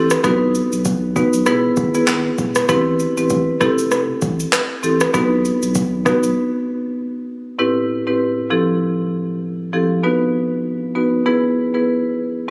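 A swung sixteenth-note afrobeats groove drives this hypnotic, mellow excerpt, where an up-front, dark marimba with medium mallets carries the chords over a thick, saturated sub bass and an overdriven deep house kit of deep kick, handclaps, rim click and shaker, until bass and drums drop out around 6.4 s and the marimba continues alone until 11.9 s, all heard through light digital ambience with a phone-in-the-room character and lossy artefacts.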